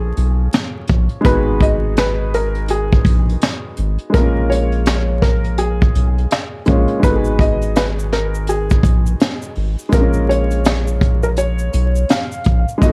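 Swung sixteenths at 83 BPM in 4/4 give this melancholic, nostalgic lo-fi hip hop fragment its lazy sway, with a brush kit of punchy kick, high-tuned snare and hi-hat sitting up front from 0.2 seconds alongside a deep, round analog bass that decays darkly beneath chords moving between A#m7 and G#m7. A felt-muted upright piano carries the melody in soft, intimate, short-sustained tones softened by a low-pass filter, plate reverb and tape echo, while a woody, vintage upright piano fills in accompaniment through the same filter and plate reverb. A grainy, close tube shaker slips in faintly at 7.0 seconds, and vinyl crackle with light reverb lends the whole recording a worn patina.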